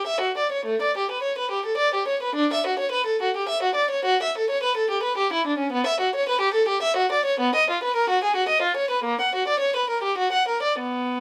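A lone violin sits up front in light reverb, its gut-string tone reedy and period in style, with a light vibrato colouring the bowed line. This is a baroque-style suite movement for unaccompanied violin, solemn and introspective in mood, cut from a longer piece. It moves in 3/4 at 107 BPM, though the rubato feel lets the pulse breathe freely. The music opens in D major and turns to B minor from 5.7 s. One player carries everything from 0.0 to 11.2 s, ranging from A3 up to F#5.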